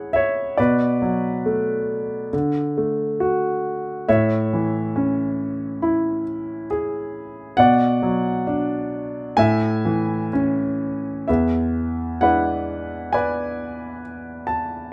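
A concert grand piano plays alone from the start, intimate and up front, with deep bass, a natural tone and its action noise audible beneath the notes. This tender, peaceful classical passage, cut from a longer piece, moves with lyrical rubato through Amaj7, Bm7 and D harmonies before shifting to a new section on an E7 chord at 11.3 seconds. Light reverb lends the room a subtle glow.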